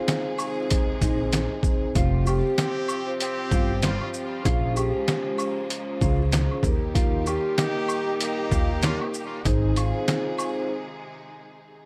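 A swung, unhurried boom-bap groove at 96 BPM drives this reflective, gritty hip hop excerpt, built on a sampler-style drum kit that sits up front, pitched down and overdriven, with a thumpy kick, a medium-tuned snare, hi-hat and shaker. A tube shaker and woodblock, with a group handclap, add vintage, band-limited percussion in the background. From 1.0 s a woody, growly pizzicato upright bass anchors the low end, while a clean, dark, fingered electric guitar carries the melody through analog chorus and filtering. A vibraphone played with soft mallets rings out metallic accompaniment with a slow motor vibrato, and a lush, bowed string section holds close, focused chords underneath. A mellow horn section adds jazz-style stabs with light vibrato and tape echo, and most parts drop away at 10.7 s, leaving the strings to sustain through a short break, all bathed in studio reverb over a progression moving from Ab through Fsus2, Bbm7 and Eb back to Ab.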